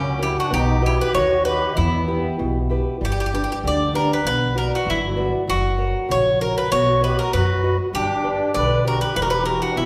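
From the first moment a metallic, double-strung Greek bouzouki carries the melody up front over a boxy fingerpicked ladder-braced acoustic guitar with audible finger squeak and a woody, thumpy pizzicato upright bass on gut strings, while a reedy, shimmering musette accordion with a vintage, band-limited tone adds a second line that drops out at 2.4 s and returns at 6.7 s, as this cool, bittersweet Greek folk excerpt in 2/4 starts at 97 BPM, speeds up throughout, moves through chords such as F#, B, Em and G, and sits in the wet reverb of a church-like recital hall.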